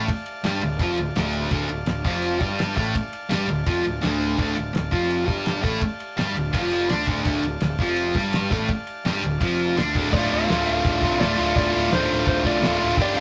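Raw and swaggering, this garage rock excerpt charges along at 167 BPM in D minor, driven by an up-front, double-tracked overdriven guitar riff over a punchy fuzz bass and a cloth-damped, thuddy drum kit with a fat snare, tight kick and dark cymbals. A buzzy vintage combo organ holds sustained chords in the background through spring reverb, adding a quick fill between 0.8 and 1.5 seconds. At 10.1 seconds a clean, twangy lap steel slide melody enters, all of it captured as a rough rehearsal-room recording with tube saturation.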